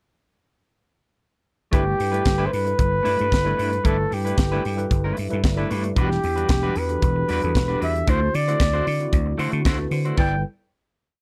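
Disco in G major at 114 BPM, this joyful and glamorous whole piece has a dark, dry production. A breathy flugelhorn carries the melody up front from 1.7 seconds, playing hook phrases in a jazz style with light vibrato and scooped notes between G4 and G5. Beneath it, a tight funk drum kit drives a four-on-the-floor beat with open hats on the off-beats, bright cymbals and a high-tuned snare, while a vintage slap bass plays growly, punchy octave lines. A clean electric guitar adds a choppy, picked sixteenth-note part with tremolo, and a worn, slightly out-of-tune tine electric piano plays syncopated, spread chords through a combo amp, with a short fill at 4.9 seconds. The harmony moves from G6/9 to Em9 and D9 before settling on a final G6/9 chord at 10.2 seconds.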